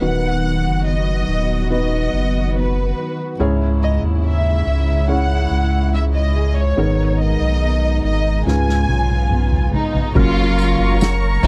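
A dry, close 1970s-style studio sound with lossy compression artefacts frames this emotional, longing pop ballad fragment, cut from a longer piece. A lush, vibrato-rich violin section carries the melody over a felt-muted upright piano with audible action noise, soft sul tasto string chords, a fingerpicked nylon-string guitar in the background and a deep, saturated sub bass placed up front, moving through B/D#, C#m, G#madd9, C#7 and Gb. A soft-mallet drum kit with dark cymbals and a boomy kick enters at 8.5 seconds with a fill, and a jingly tambourine joins in the background at 10.6 seconds.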